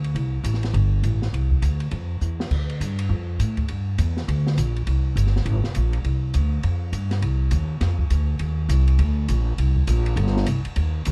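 Spiritual and cool, this modal jazz fragment moves at a brisk swing with an upright bass and an open jazz drum kit playing together throughout. The bass sits up front, plucked with a woody, growly tone from steel strings, while the drums sound smooth in a small room, with dark cymbals, a high-tuned snare and a punchy kick, adding a fill at 2.2 seconds. The production is dark and dry, and the harmony shifts to a new centre at 7.2 seconds as the second section begins.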